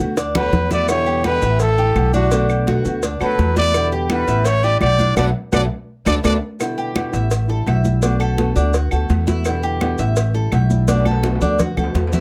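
This sunny Cuban son and guajira excerpt opens on a drum fill over nylon-string guitar, Cuban tres arpeggios, upright bass, and agogo bells with timbales, moving at 168 BPM in a straight 4/4. The guitar is boxy and fingerpicked, the tres metallic with picked double strings, and the pizzicato bass sits up front, dark and thumpy on gut strings. Through the first section, a breathy trumpet carries the melody, whispered and intimate with vibrato and a soft attack, while a buzzing, shimmering sitar plays a second line behind it. Tight, high-tuned cowbell and bongos, grainy, saturated maracas, woody claves, and the ringing, vintage agogo and timbales fill out the background percussion, and hard-handed congas with a thick skin sit closer in the mix. The chords cycle through D6, A7sus4 and Bm7, with a band accent from 5.2 to 6.6 seconds and another drum fill near the end, set in light reverb.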